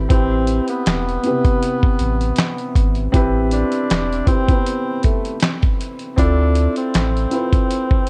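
A breathy tenor saxophone carries the melody in a jazz style, with subtone, vibrato and scooped notes, over a nostalgic, hazy lo-fi hip hop groove with a gentle swing, cut from a longer piece. Beneath it, a felt-muted upright piano plays mellow, dark chords with audible action noise, moving from Am9 to Dm7 at 6.2 seconds, while a deep, round dub sub bass holds the low end until 7.3 seconds. A gritty, compressed sampler-style drum kit of thumpy kick, snare, hi-hat and handclaps sits up front, and a small room and cassette tape sound give the whole piece its dusty haze.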